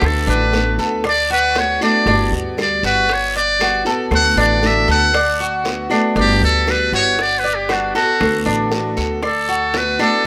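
Relaxed and sunny, this short cut from a longer Cuban son and guajira piece moves at 117 BPM in a straight 4/4, in D major, with its harmony swaying between D6 and Gmaj7 roughly every two seconds. A trumpet with a metal mute carries the melody up front as a jazz-style solo, its tone brilliant, buzzy and thin with light vibrato and a punchy, forceful attack, set back in a roomy space and trailed by tape echo. Beneath it, a picked old ladder-braced acoustic guitar plays the accompaniment with audible finger squeak, while a Cuban tres spins metallic arpeggios on its doubled, partly octave-doubled strings. An upright bass plucks dark, thumpy gut-string notes that end at 10.0 seconds, together with tight, high-tuned bongos played with soft hands in the background. Raspy guiro and very quiet, distant woody claves complete the percussion, and the whole has the light reverb, small-room ambience and rough feel of a home demo.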